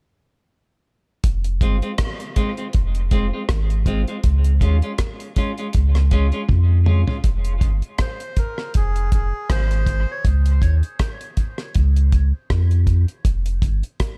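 Heavy and spacious, this dub reggae excerpt sits on a slow swung groove in 4/4, drenched in an echo-heavy mix with a small room ambience. A deep, round sub bass with a sine-like tone and fast attack enters at 1.2 seconds and sits up front, sustained and mellow, moving between F minor and D-flat chords. A damped 70s drum kit, dry and dark with a tight kick and rolled-off top, plays hi-hat, kick, rim clicks and toms alongside it, with a drum fill closing the first section at 6.5 seconds. A clean, picked electric guitar adds accompaniment through dub echo until 7.2 seconds, sitting low in the balance. In the second section a reedy, breathy melodica with a nasal, plastic-cased sound carries a brief airy melody through dub echo from 8.0 to 10.2 seconds, before the harmony drops out and the drums play on to the cut.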